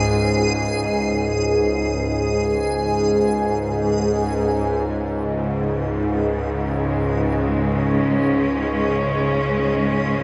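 Dark ambient drone in free time, unsettling and cavernous, cut from a longer piece and bathed in a cathedral-like reverb with a 5.9-second decay and a dulled top end. A tense, nasal, string-like drone with a detuned sawtooth edge and vibrato sits low and up front, while a reversed, granular texture with a dreamy triangle tone hovers high on G#4, both carrying their own reverb. At 5.1 seconds a lush, bowed studio cello section enters with smooth, focused sustained chords, shifting the piece into its second half.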